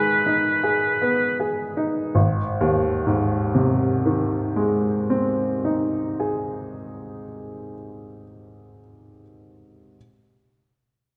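Steeped in a lush concert-hall reverb, this melancholic, yearning romantic classical fragment moves at a slow, rubato 43 BPM in 4/4. It opens with a clear, vintage-toned oboe up front, sounding B4 with light vibrato and a soft attack, over a bright, brilliant baby grand piano, slowing through the first 2.1 seconds as the harmony shifts from G# minor to G# major, and the oboe falls silent at 1.4 seconds while the short-sustained piano carries on to 10.0 seconds.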